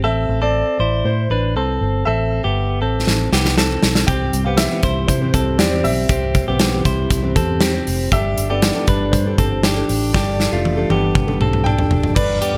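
Jangly indie pop at 119 BPM in a straight 4/4, this nostalgic, youthful excerpt cycles through Amadd9, C and Gsus2, opening with a woody, boxy upright piano melody with audible action noise, twangy, compressed arpeggios from a direct-recorded clean electric guitar with digital delay, and a dark, round, foam-muted fingered electric bass. A big, up-front rock kit with a punchy kick and bright cymbals bursts in with a fill at 3.1 seconds, and a warm fingerpicked dreadnought acoustic guitar joins in the background at 4.1 seconds. Another drum fill at 10.1 seconds carries the light-reverb mix toward the cut.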